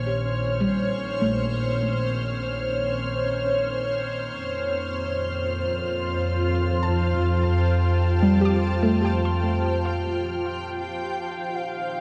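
A blurred granular cloud pad up front, a soft round pluck with chorus and tape echo arpeggiating, an up-front bowed double bass section with a reedy gut-string tone, a background analog drone that fades out, and a veiled, muted violin section open this weightless, luminous ambient excerpt in free time, moving from Bbmadd9 to F7 under a wet spring reverb and cassette tape haze, before the bass stops at 10.7 seconds and a velvety synth lead enters at 10.8 seconds over Ebadd9.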